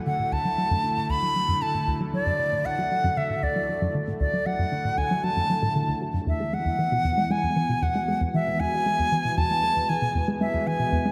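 A swirling, phased analog pad fades in from 0.0 s with sustained chords, opening this cosmic, luminous piece of ambient, sequencer-driven space music in D Lydian at 116 BPM. Almost at once a tight, detuned sawtooth synth riff drives underneath, while a bright, reedy wooden flute with vibrato carries the melody up front, both touched with analog delay. The harmony moves from D to E at 6.3 s, and a wet concert-hall reverb surrounds the sound in this short cut from a longer work.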